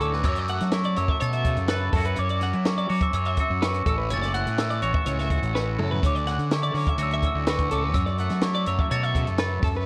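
This intricate, wistful math rock and midwest emo excerpt opens at once with the full band at a straight 124 BPM in 4/4, tuned to A4 = 439 Hz. A mellow, bell-like glockenspiel struck with soft plastic mallets carries the melody, ringing in a boxy small room with a slapback echo, and it falls silent at 9.4 seconds. Beneath it, a twangy, clean electric guitar picks out accompaniment through spring reverb, while a bright, compressed twelve-string electric guitar spins arpeggios coated in lush chorus. A fuzzy, overdriven fingered bass sits up front, and a compact cocktail drum kit, dry and natural with a high-tuned snare and tight kick, works across hi-hat, kick, snare and toms, adding a fill just before the 6.0-second mark. The harmony moves from a rootless Dmaj9 over F# to Dmaj9 and then F#m7, and a light reverb plus the warbling pitch drift of a worn cassette give the whole recording a faded, nostalgic haze.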